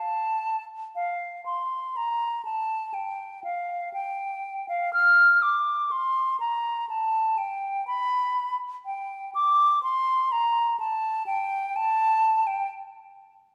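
Flowing in a free, rubato 4/4, this solemn baroque-style classical fantasia is carried by a solo silver concert flute that plays from the start to 12.7 seconds, moving between F5 and F6. The flute sits up front with a mellow, hollow tone, crisp attacks and vibrato. The recording is set in a wet recital-hall reverb heard from further back in the room, and it is cut from a longer piece.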